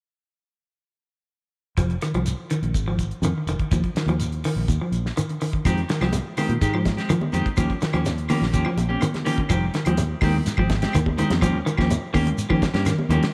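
Funky and hypnotic, this afrobeat excerpt from a longer piece moves at 125 BPM in a straight 4/4, centred on F minor as the chords shift between Fm7, Ebsus2, Fm9 and Eb9. From 1.8 seconds a semi-hollow electric guitar sits up front with clean, picked, hollow-bodied arpeggios, its tone treated with tremolo and slapback echo. Beneath it, a fingered electric bass gives a round, foam-muted foundation, while a damped 70s drum kit supplies a dry, airy groove of hi-hat, tight kick, rim click and fat snare, and a grainy shekere murmurs in the background. At 5.7 seconds a second clean electric guitar adds picked stabs, joined by woody, close claves and, soon after, ringing high-tuned congas played with soft hands, both tucked behind the band. A moderate echo chamber reverb lends the whole mix a sense of space as the groove settles into its second section around 9.5 seconds.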